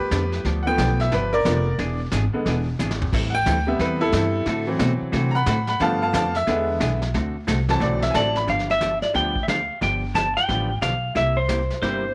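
A loping swung-eighth feel in 4/4 drives this swinging, down-home western swing excerpt, with a bright, brilliant upright piano taking the lead from 0.0 to 8.5 seconds over thumpy gut-string upright bass, a dark, compressed hollow-body jazz guitar and a smooth brushed drum kit with a punchy kick and a short fill. A clean, up-front lap steel guitar picks up the melody at 8.2 seconds as the tune moves into its second part. A twangy, fingerpicked pedal steel slips in at 11.8 seconds, all set in a light studio reverb.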